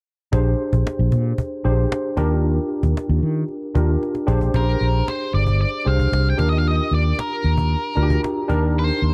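Upbeat and glossy, this short cut of polished 1980s jazz-funk pop moves at 114 BPM in a straight 4/4, with a round, up-front fretless electric bass and a worn, slightly out-of-tune tine electric piano with analog chorus carrying the Bb13 and Ebmaj7 chords over a woody cajon with faint snares. After a cajon fill at 4.0 seconds, a dark octave-fuzz lead guitar takes the melody from 4.6 seconds, and the electric piano adds a fill near the end as the harmony turns to Cm9/Eb. The sound is dry and close, like a 1970s-style studio with little reverb.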